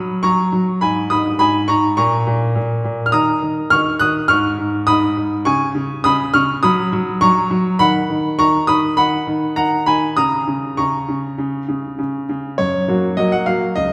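A clear, natural grand piano plays up front from the first moment, carrying a cheerful, playful classical-period sonatina alone in a straight four with short-sustained notes ranging from C#2 to F#6, set in a wet scoring-stage reverb with a 1.5-second tail and a dark, warm production, in a brief passage cut from a longer piece that moves into a new section at 12.6 seconds.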